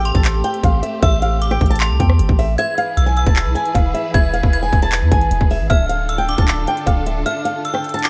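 Hard-hitting and eerie, this half-time trap excerpt sets a fingerpicked flamenco guitar melody, bathed in plate reverb and tape echo, against a ringing, inharmonic FM bell line that warbles with chorus high above. Lush, bowed symphonic strings sustain chords underneath, while a deep, sine-like 808 bass and an up-front electronic kit of hard-clipped kick, metallic hats, handclaps and rim clicks drive the track. The bass drops out at 7.2 seconds, and brief breaks land at 2.6 and 7.3 seconds.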